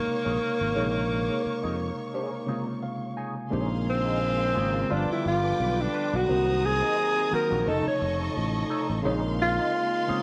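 A warm alto saxophone carries the melody in this short cut from a lush 1970s-style soul piece, its subtoned, lightly vibrato tone with scooped notes sitting up front yet roomy, and it moves into a solo at 3.5 seconds as a new section begins. Around it, a barky, reedy electric piano comps with light overdrive and a fast tremolo heard through its built-in speakers, stepping forward with a fill at 2.5 seconds during a break that begins at 2.1 seconds. A fingered electric bass growls bright and punchy near the front, while a clean, dark electric guitar plays a riff through wah and spring reverb in the background. A studio violin section adds a bowed, expressive second line at a distance, and a very quiet French horn section enters at 3.5 seconds with sustained, shadowy chords. Set at 87 BPM in Bb dorian with a gentle sixteenth-note swing, the music passes from Bbm11 through G7, Cm7b5 and F7b13 back to Bbm11, its bittersweet, smooth mood framed by an echo chamber reverb and small room ambience.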